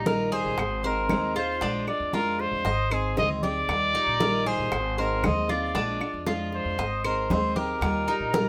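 A straight 4/4 groove at 116 BPM drives this relaxed, danceable Cuban son and guajira passage, with bright, damped congas and tight, high-tuned bongos played by soft hands in the background, and woody claves entering at 0.6 seconds. Up front, a vintage jazz-style trumpet with light vibrato carries the melody over picked steel-string acoustic guitar with fresh strings and a touch of finger squeak, metallic double-strung Cuban tres arpeggios, and a dark, thumpy gut-string upright bass played pizzicato. The chords cycle through Ebadd9, Ab and Bb7 in a moderate studio reverb.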